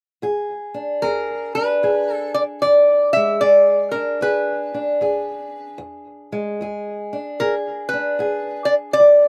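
Laid-back and rollicking, this short cut of acoustic country blues swings easily at 75 BPM in E mixolydian over an E7 chord, with a dark, woody, boxy old ladder-braced acoustic guitar on aged strings fingerpicking the accompaniment with a slapback echo from 0.2 seconds, joined at 1.0 seconds by a bright, metallic, nasal lap resonator guitar that carries the melody with slide and fingerpicks, both sitting up front in a dry outdoor recording.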